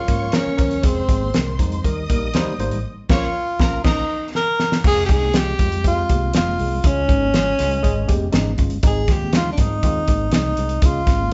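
A close-miked tenor saxophone with light vibrato and a soft attack leads this urgent, passionate slice of uptempo 1960s-style soul in F minor at 120 BPM, soloing through the opening 4.8 seconds while a distant, lush violin section bows a second line until 4.0 seconds and the band hits an accent that ends in a drum fill. Underneath, a fat-snared, gritty drum kit with dark cymbals sits up front, joined by a round, foam-muted electric bass, a worn, slightly out-of-tune tine electric piano and very quiet, high-tuned congas. The band plays live in one room with moderate large studio reverb and a rolled-off top, moving from Bbm, Fm and Eb into a Fm, Db and Ab passage.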